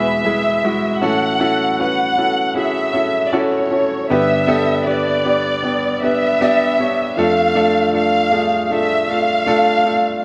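A dark, bowed string section and a grand piano open together at once, carrying this short pop fragment, cut from a longer piece, with an emotional yet hopeful mood in an unhurried, straight 4/4. The strings take the melody in a fairly narrow upper register, their ensemble tone lush and expressive, with soft attacks, vibrato, portamento and a smooth top end, sitting up front. Underneath, the grand piano supplies accompaniment across a broad span from deep bass notes to the middle-upper register, sounding warm, present and polished, also placed close to the listener. After a brief opening passage, the music moves into a longer second section at 1.0 seconds, with the harmony passing from Eadd9 through A6 and G to Dm/F. A lush hall reverb with a two-second tail soaks the whole mix, giving it a dreamy atmosphere through to the end at 10.2 seconds.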